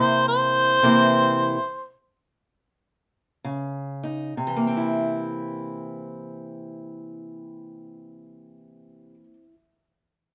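A harmonica and a fingerpicked steel-string acoustic guitar open together in this swaggering, soulful fragment of acoustic country blues, cut from a longer piece and set in a slow 4/4 around 63-73 BPM with a swung eighth-note feel in C mixolydian. The harmonica takes the melody up front with a warm, jazz-inflected solo voice, colouring its brief phrase with light vibrato, tongue slaps and scooped notes before it falls silent at 1.9 seconds. Beneath it, the parlour guitar supplies a dark, boxy accompaniment, also up front, and carries on alone until 9.5 seconds. The tempo slows through the opening passage, and a stop between 0.8 and 3.5 seconds leaves a dramatic gap before the harmony moves from C7 to Dbsus2 and back to C7. A light reverb gives the intimate duo a touch of space.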